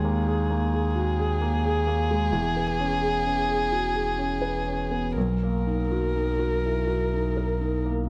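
Neoclassical piano and strings in a slow, rubato 3/4 at around 60-66 BPM, this brief fragment cut from a longer piece feels fragile and reflective. A felt-muted upright piano carries the accompaniment from B1 to B4, its soft, mellow tone sitting up front with an intimate, natural presence. A single bowed violin sings the melody in a narrow span from G#4 to A#4, played sul tasto with light vibrato, a soft attack and an airy bow, close and warm in the mix. Beneath them, a deep, full sub bass with an added octave sustains between E1 and D#2, its sine-and-triangle tone starting with a fast attack. The harmony drifts from G#sus2/D# to E6 at 2.3 seconds and settles on Bmaj7 at 5.2 seconds, all held in light reverb. The violin drops out at 7.9 seconds, leaving piano and bass to close the passage.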